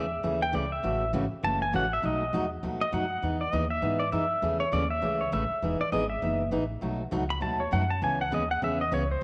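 Down-home and swinging, this 9.2-second country excerpt in E major moves at a brisk 201 BPM with a swung feel, as a clean, compressed pedal steel guitar takes an up-front solo with fingerpicks, slide and volume swells over a dark, picked dreadnought acoustic guitar and a woody, thumpy pizzicato upright bass, all sitting in moderate echo-chamber and small-room reverb through chords like Amaj7, F#m7, B7 and Emaj9.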